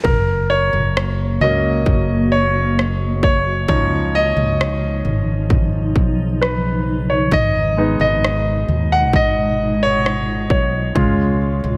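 Emotional and hopeful, this pop ballad, cut from a longer piece, moves at 66 BPM in F# major. A bright, polished concert grand piano leads up front with a deep low end. It is supported by a direct, amped fretless electric bass and an electronic house drum kit with a punchy kick, rim clicks and toms, re-recorded in a small room. A dark, blurred granular cloud pad with its own built-in reverb enters at 1.0 seconds, and the whole sits in light digital ambience as the chords pass from F# through C#add9 and G#m to C#.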